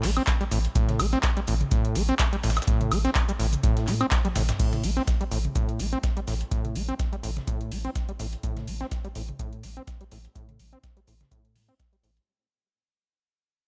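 An acid house excerpt with a trippy, driving feel and a swung groove, built on a squelchy, resonant sawtooth acid bass riff that sits up front with gritty overdrive and tape echo, over a thick triangle sub bass with sidechain pumping and a deep electronic kick entering at 0.3 seconds. A booming analog drum machine supplies metallic hats, handclaps, toms, woodblock and crash, while a dusty, sampler-style kit of hi-hat, shaker and snare lingers in the background, high-pass filtered and roomy, all set in a digital ambience. After a drum fill at 4.2 seconds, a filter sweep runs across the acid bass from 4.6 seconds as the whole track fades out.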